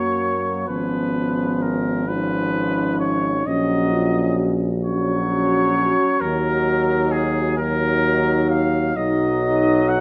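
Classical brass band music in a tender, lyrical, hymn-like vein, moving in a flexible rubato 6/8 through a short passage cut from a longer piece. A warm cornet sings the melody up front with light vibrato, though it sounds distant and roomy, while a mellow, tight French horn section carries a smooth second line in the background. A clear trombone and a dark, close-miked euphonium fill in the accompaniment, and a set-back tuba with light vibrato anchors the bass, heard in the reverb of a moderate recital hall.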